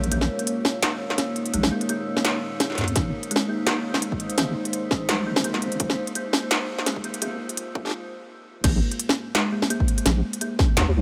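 Dark, heavy half-time drum and bass at 169 BPM in Bb minor, this excerpt opens with a deep, detuned sawtooth pad pumping under sidechain, a gritty 12-bit kalimba with woody, hollow plucks through low-pass filter and delay, a chorused square-and-sine wobble bass, an eerie FM metallic drone in the background, and an industrial kit of clanging snare and crisp hats, with a tape-warm electronic kick joining at 3.0 s as filter sweeps build to a break at 7.9 s and a drop onto Bb5 at 8.6 s.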